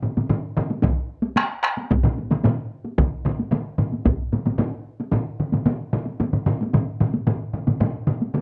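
A straight 4/4 pulse at 112 BPM drives this powerful Japanese traditional taiko ensemble excerpt, where three up-front drum parts struck with hard and heavy sticks sound from 0.0 to 8.4 seconds, one in a live room and two in a small room, joined by a fourth close, dry heavy-stick part from 0.8 to 4.2 seconds that sits slightly louder, all captured as a close 1970s-style studio recording with moderate booth ambience as the music moves into a new section at 5.1 seconds.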